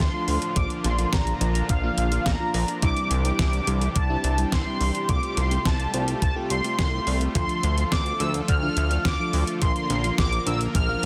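A dense, heavily limited modern master with light reverb frames this moody, cinematic synthwave excerpt, which moves in a straight 4/4 over Dm, Bb, Cadd9 and Fadd9/C. Up front, a mellow synth brass carries the melody with a dark, round, detuned tone, touched by vibrato, ring modulation and a filter sweep, and lifted by chorus and delay. Beneath it, a soft supersaw holds airy, smooth sustained chords roughened by vintage 12-bit sampler grit and pulsing with sidechain pumping, while a glossy, evolving chorused synth bass built from pulse-width-modulated pulse and sawtooth sits prominently in the mix. An FM electric piano with a soft pad layer adds lush, dreamy chorused stabs in the background from 0.1 s. A clean 12-bit drum machine brings hi-hat and a fat snare from 0.3 s, joined at 0.6 s by a thumpy electronic kick, both drum parts carrying a tape-warm, sampler-style character.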